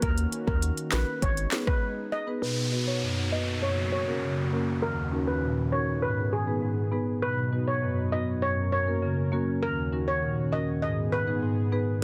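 A dense, heavily limited modern master with digital ambience frames this bouncy, tough dancehall cut in G# minor at 100 BPM, where a deep, saturated sine sub bass and an up-front electronic afro-pop drum kit (deep kick, sharp snare, smooth hats, handclaps and rim click) punch in only in the opening seconds, the drums stopping at 1.8 s, while a shimmering metallic steel pan melody with low-pass filtering and digital delay, a woody, dark marimba accompaniment, and a detuned sawtooth analog pad with chorus and sidechain pumping carry the minor-key chords through a filter sweep from 2.4 s, joined by an electronic downlifter until 7.2 s.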